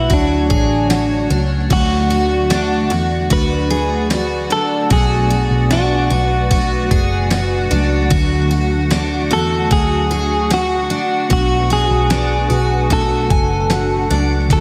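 Dream pop with a blissful, floating mood, this excerpt from a longer piece moves in a straight four-beat feel, and a lush hall reverb gives the whole mix a big arena sound. Up front, a clean, picked electric guitar carries the melody with spring reverb, tape echo and slapback echo, while a dark, fingered electric guitar sits in the background with harmonic tremolo and lush chorus. A hollow, flute-like pad holds slow-attack chords through ensemble chorus, and a bright twelve-string acoustic guitar shimmers with octave-doubled arpeggios, fresh strings and a touch of finger squeak, lightly chorused and echoed. Underneath, a foam-muted electric bass plays round, punchy low notes, and a gritty, compressed sampler-style drum kit enters at 0.1 s in the background with a thumpy kick, snare, ride, crash and tambourine. The harmony drifts between Dmaj7, D and Bm7, with the main section settling in at 1.7 s.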